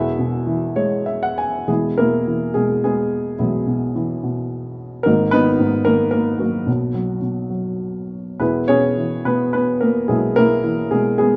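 Relaxed and hopeful, this short excerpt from a longer classical piece presents a lyrical solo upright piano in E lydian, moving in a rubato 3/4 that drifts between 96 and 113 BPM. The piano plays alone for the full 11.4 seconds, spanning a deep E1 up to G#5, with a dark, mellow, woody tone, short sustain and an up-front placement. A brief fill from 0.5 to 1.7 s closes the opening phrase before the music settles into a longer second passage. The harmony rests on E, shifts to G#madd9 at 5.1 s and Bmaj7 at 6.7 s, then returns home to E at 8.4 s. A moderate recital hall reverb surrounds the instrument, and the dark, warm production keeps the top end soft.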